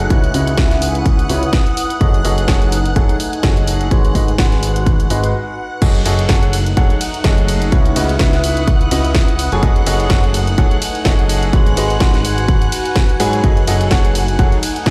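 A punchy electronic kick sits up front and drives this soulful, energetic piano house piece at 126 BPM in 4/4, with a 56% swing on the sixteenths. A layered, tape-toned house kit adds hi-hat, ride, crash and a cracking snare. Underneath, a fat, detuned sawtooth bass with a filter sweep pumps with sidechain compression, holding the low end in F# dorian. A clear, worn baby grand plays the riff through a low-pass filter and dub echo, over chords that move among C#m11, F#m69 and G#m7. Above it, a shimmering, vintage string machine sustains bright violin chords with ensemble chorus, while a warbling, nostalgic lo-fi pad adds mellow, reverberant texture, and both pump with the sidechain. A short break at 5.3 seconds leads into the drop at 5.8 seconds, and the mix sits in the large reverb of a bare room heard over a big sound system.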